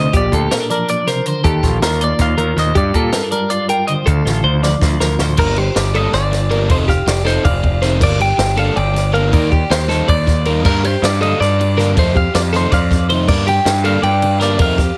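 A clean electric guitar opens this wistful, bright slice of math rock and midwest emo, carrying the melody with a compressed, spring-reverbed tone over a shimmering twelve-string electric guitar spinning twangy arpeggios and a dark, fingered mellow guitar pulsing through harmonic tremolo. The tempo is a brisk 319 BPM counted in eighths, set in an off-kilter 7/8, and the chords drift through jazzy colours like Bb6, Eb69 and Gm7 before settling around Gmadd9, F7 and Ebmaj7#11. A growling picked bass sits up front with gritty overdrive, while a compact cocktail kit sounds dry and natural, its high-tuned snare, tight kick and dark cymbals close to the ear. A drum fill from 4.3 to 5.4 seconds leads into a second section, where a crunchy, double-tracked overdriven guitar riff enters at 5.4 seconds and the mellow guitar falls away shortly after, at 6.7 seconds. Light reverb gives the mix a modest sense of space, and the passage is cut from a longer piece.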